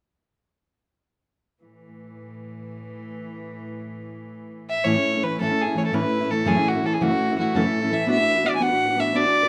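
A soft-attack chamber string section opens with a floating, pure drone at 1.6 s, and at 4.7 s a nasal, reedy solo fiddle enters up front with the bowed melody, joined at 4.8 s by an up-front fingerpicked steel-string dreadnought acoustic guitar moving through A, F#m7 and Bm in this lively, bright Celtic folk slip jig in A major at 112 BPM in 9/8, lightly touched with reverb and cut from a longer piece.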